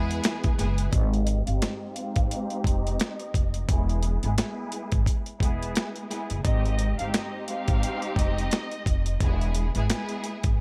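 Warm, soulful boom-bap hip-hop with a swung 4/4 groove, cut from a longer piece, built on gritty, compressed sampler-style drums with a thumpy kick and medium-tuned snare, and a woody, growly pizzicato upright bass, both up front. A fat tonewheel organ with key click and slow rotary speaker sounds only in the opening second, while a bowed string section with portamento and a smooth top, shaded by a low-pass filter, accompanies throughout. From 0.9 seconds a lush, distant violin section carries the melody through analog delay as a filter sweep runs, bowing until 9.2 seconds, all set in a small room ambience.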